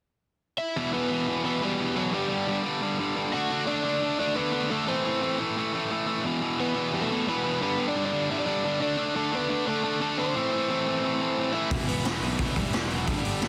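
This aggressive, raw punk rock excerpt opens with an overdriven electric guitar carrying the melody at 0.6 seconds, joined almost at once by a tight distorted guitar riff that sits bright and up front. At a straight 175 BPM in E minor, the two guitars drive through a cycle of chords moving from Em through G, D and Am before returning to Em. At 11.7 seconds the full band comes in: a raw garage drum kit with a boomy kick, medium-tuned snare and hi-hat, saturated and gritty with a rolled-off top. A growly, punchy fuzz bass sits in the background, and a very quiet second distorted guitar adds another picked riff underneath. The sound is dry with little reverb, and the dense, heavily limited master keeps the whole piece loud and in your face until the cut at 13.5 seconds.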